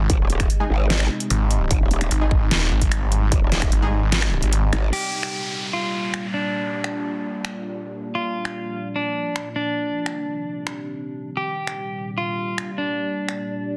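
A half-time 4/4 pulse drives this menacing, aggressive heavy wobble dubstep, opening on a drop where a punchy, tape-warm electronic kick, an overdriven dubstep kit with a deep snare, finger snaps, hi-hat and crash, a snarling distorted saw bass and a growling, wobbling growl bass hit together under bright orchestra-hit-like synth stabs and a dark, evolving wavetable pad with phaser and sidechain pumping, until the kick drops out at 4.1 seconds and the basses fall away just before 4.9 seconds, when a downlifter falls and a clean, picked electric guitar takes the melody over the pad and kit in a dense, heavily limited mix.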